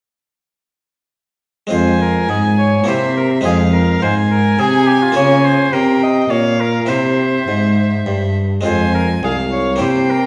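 At 1.7 s, oboe, violin, harpsichord and cello enter together in this flowing, grave baroque-style sonata movement in F minor, moving at 104 BPM in 3/4 and cut from a longer piece. The clear oboe carries the melody with light vibrato and a roomy, distant placement, while the rich violin sings a smooth, even second line above it. Underneath, the bright, plucked harpsichord fills in the accompaniment in Italian style and the cello plays an expressive bass with vibrato and portamento, all set in a wet recital hall reverb as the harmony moves from Fm through C7, Bbm and C back to Fm.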